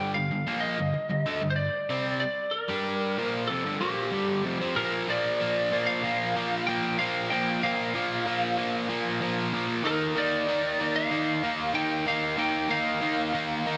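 A heavy, menacing rock piece in a straight 4/4, cut from a longer work, set in a lush hall reverb that gives it a big arena sound. A cranked stack guitar, bright, overdriven and double-tracked, sits up front playing the riff throughout, moving from a G minor opening to a shift at 4.8 seconds. Over it, a lightly driven lead guitar with a twangy, slightly broken-up tone and digital delay carries the melody across the whole passage.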